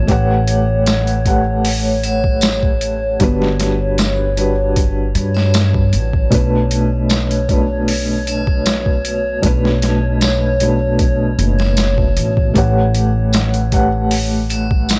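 A dry, gritty small-room recording carries this smoky, brooding trip hop excerpt in B minor at 77 BPM, where a felt-muted upright piano with audible action noise, tremolo and tape echo accompanies over A13, Gmaj7 and Bm7, while a warbling, nostalgic tape-like pad with chorus and 12-bit grit sustains beneath, a woody pizzicato upright bass with transformer saturation sits up front, an overdriven, pitched-down boom bap drum kit with a thumpy kick and high-tuned snare enters at 0.1 seconds, and close acoustic tambourine and triangle join at 0.9 seconds.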